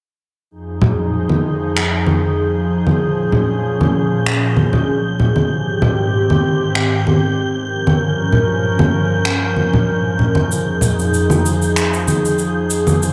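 Wistful and relaxed, this sunset chillout excerpt in F minor moves at 96 BPM with a gentle 16th-note swing. A breathy, detuned pad with chorus sits up front holding sustained chords through Fm7, Bbm7, Abmaj7 and Gm7b5, while a mellow, wind-like tuned noise texture floats high above it from 0.9 seconds. Bright, distant congas begin at 0.8 seconds, and natural finger snaps and cabasa join at 1.8 seconds, all set in light reverb and small room ambience.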